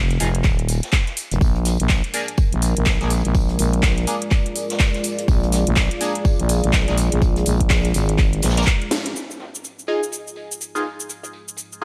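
A swung, bouncy 4/4 groove drives this swaggering bass house excerpt, where a punchy kick and cracking house snares with metallic hats sit up front over a faint brushed jazz kit, a growling FM bass and nasal, phased chord stabs pump against the beat, and a dark, detuned analog pad enters at 1.4 seconds; just after the kick and bass drop out, a drum fill and band accent at 8.9 seconds give way to a filter sweep on the pad.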